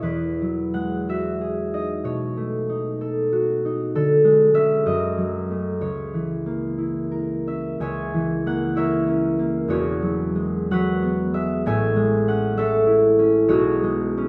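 Flowing in a rubato 6/8 at roughly 55-66 BPM counted in dotted quarters, this short passage cut from a longer classical piece for solo concert harp feels serene and dreamy. The harp plays throughout, its thumb-plucked strings ringing across a broad span from E1 up to G#5, and it sits up front in a dark, warm production. A moderate concert hall reverb surrounds the notes with space as the harmony opens on Emaj9 and B9. At 3.9 s the music settles into C# minor, passing through Dmaj7#11, F#m6 and C#m6. A second section begins at 7.8 s, moving through E69 and Amaj7 before reaching Bsus2.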